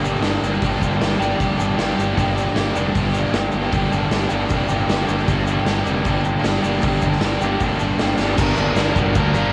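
Gritty and swaggering, this excerpt from a longer garage rock piece charges along at 155 BPM in G minor, with a crunchy, double-tracked overdriven guitar riff up front over a growly fuzz bass, a grainy tube shaker in the background and a saturated, punchy drum kit with a pumping room sound that enters at 0.2 seconds and cuts loose with a fill at 8.2 seconds, all captured with a small-room, home-cassette rawness.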